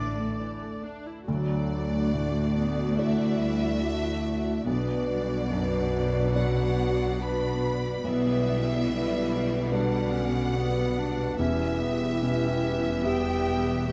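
Cinematic, emotional film score for orchestra in D major at a rubato 72 BPM, uplifting and hopeful, where oboe and silver flute touch a brief opening Dsus2 before the hollow, airy alto flute takes the melody at 1.3 seconds with the clarinet beneath it, over rich, vibrato-laden violin, viola, cello and double bass sections, ringing harp arpeggios, a soft felt-muted upright piano with audible action noise and very quiet mellow French horn chords, all moving through D, Bm, G/B and Em in a moderate scoring-stage reverb.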